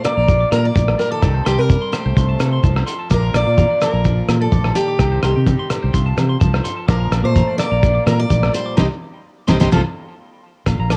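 Danceable and warm, this swung highlife guitar-band excerpt, cut from a longer piece and captured as a lo-fi home cassette recording, sets an up-front bright dreadnought acoustic guitar melody over a round, punchy fingered electric bass, a compressed twangy electric guitar accompaniment and a second, warm broken-up electric guitar playing tape-echoed arpeggios in the background, while a very quiet buzzy muted trombone carries a second line, a muffled cloth-damped drum kit with a fat snare, grainy shekere and ringing agogo bells drive the groove, thin-skinned congas join at 3.1 s, and a band accent at 8.8 s leads into a drum fill at 9.7 s.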